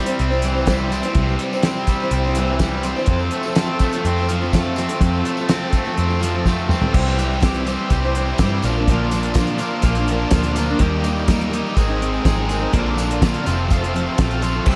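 A picked, full-bodied dreadnought acoustic guitar with slapback echo, a very quiet tonewheel organ holding sustained chords through a slow rotary speaker, and a biting, double-tracked overdriven guitar riff up front open this hopeful folk rock and heartland rock excerpt at 124 BPM in C mixolydian, joined almost at once by a cloth-damped, thuddy drum kit with a fat snare and dark cymbals, a jingly tambourine and a round, foam-muted vintage electric bass, with a drum fill at 6.5 seconds leading into a second section that moves through Bb, Eb and Abadd9, the whole mix set in a lush hall reverb for a big arena sound.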